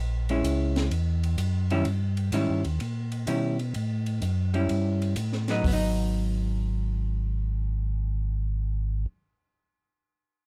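Smoky and late-night, this short cut from a longer soul jazz organ trio piece swings at 127 BPM in G# minor, with a mellow, round tonewheel organ carrying the bass line up front through a slow rotary speaker, its key click and vibrato audible. A clean, picked hollow-body jazz guitar adds dark accompaniment from 0.3 seconds, moving through chords from A#m7b5 and D#7b9 to A7 before settling on G#m7 at 5.6 seconds. A compact cocktail drum kit with a high-tuned snare, punchy kick, ride and hi-hat sits in the background with a rolled-off top and drops out at 5.8 seconds, all captured by close, detailed microphones with little reverb.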